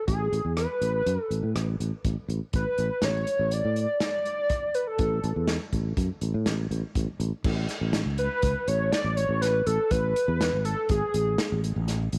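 Lightly reverberant and set in a small room, this intricate, bright fragment of progressive instrumental band music in 5/4 pairs a hollow, woody square-wave lead treated with chorus against a growly fretless electric bass and a vintage drum kit with dark cymbals and a punchy kick, before an analog synth lead solo enters at 7.5 seconds.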